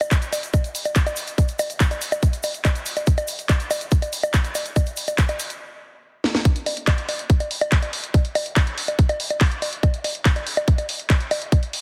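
Driving, psychedelic trance in a straight 4/4, where a tight, tape-warm electronic kick sits up front alongside a layered techno kit of bongos, handclaps, hi-hat and a cracking snare re-recorded in a large room, while a grainy, bright egg shaker stays in the background until 5.6 seconds, and a brief stop with a drum fill at 6.2 seconds leads into the drop at 6.5 seconds, the whole mix carrying a heavily compressed, radio-like sound with light reverb.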